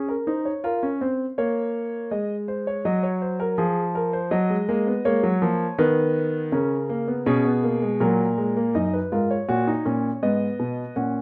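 Moving in a steady, straight three-beat metre, this lively and joyful short cut from a longer classical work is a baroque-style three-part fugue for solo grand piano. The piano sounds natural and up front, with a gentle glow and a light touch of reverb around it, and its range stretches from Gb2 up to Gb5. The harmony moves briskly, passing from C# through A#m and G#7 to a bright F# chord at 4.3 seconds, then on through B/D# and C#5. A new section begins at 8.8 seconds, turning toward darker minor colours with Ebm/Gb and Abm. The piece stops at 11.2 seconds, leaving a brief, cheerful glimpse of the counterpoint in progress.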